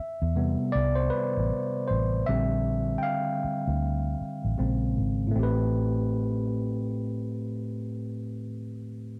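Swung sixteenths in 4/4 give this short R&B cut a smooth, sultry lean, as a bright, barky tine electric piano, overdriven and gritty through a combo amp, takes a solo from the start until 5.4 seconds over chords moving from Am9 through Bb69 and Bbm9. A dark, round, foam-muted fingered electric bass enters at 0.2 seconds, punchy and up front, and drops out at 8.4 seconds, leaving the piano to carry on to 9.2 seconds. The sound is dry and close, with the feel of a 1970s studio.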